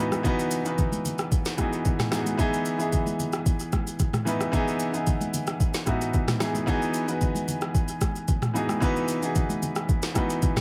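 A clear, intimate baby grand piano sits up front in this late-night amapiano piece, its action noise audible over a single Emaj9 chord. A smooth R&B drum kit enters almost at once with a soft electronic kick, woody snare, rim click, shaker and toms, re-recorded in a small room, while vintage, band-limited congas with thick skins and hard hands sit in the background under a dub echo. Light reverb and digital ambience give the echo-heavy mix its deep, nocturnal atmosphere.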